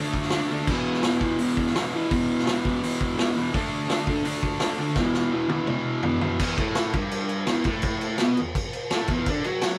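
A double-tracked fuzz guitar leads this raw, rowdy garage rock excerpt, its picked, distorted riff ranging from E2 to F#4 and moving between D5 and E5 power chords. An up-front vintage drum kit with dark cymbals, a medium-tuned snare and a tight kick drives the straight 4/4 feel, rolling through a drum fill from 5.0 to 6.4 seconds into the next section. Light reverb gives the sense of a band playing live together in one room.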